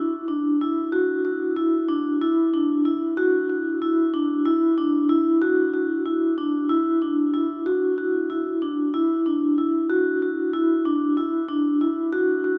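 A vintage-sounding vibraphone struck with medium hard mallets plays alone and up front through this driving, brooding progressive instrumental excerpt in 7/8 at 187 BPM, its metallic, band-limited ring shimmering with medium motor vibrato within a narrow range from D4 to F#4 and washing into a cathedral reverb that hangs for 6.4 seconds in a church or concert hall.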